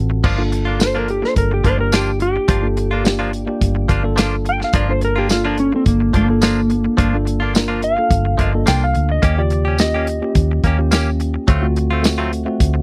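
A dry, close 1970s-style studio sound frames this mournful, soulful straight-eighth soul blues excerpt in G minor at 107 BPM, where a dark, clean lap steel carries the slide melody from 0.8 s over a worn, slightly out-of-tune tine electric piano with overdrive and phaser, a round, foam-muted vintage bass, bright twangy direct-recorded guitar stabs and an up-front soul drum kit with dark cymbals and tambourine, moving from Gm7 to Eb7 at 9.2 s and D7#9 at 11.5 s.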